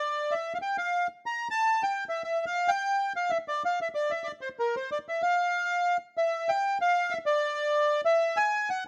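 A rubato pulse in 3/4 at 189 BPM gives this brief tango fragment an elastic feel, set in F major with tuning at A4 = 444 Hz. A solo bandoneon carries the whole passage from 0.0 to 8.8 seconds, staying within a compact upper register between Bb4 and Bb5. Its tone is reedy and full, close-miked so that it sits dry and up front, with fine detail in the sound. The mood is playful yet nostalgic, and the music moves into a new section at 6.3 seconds. A moderate studio reverb of 0.8 seconds gives the intimate recording a modest sense of space as this short cut from a longer piece closes.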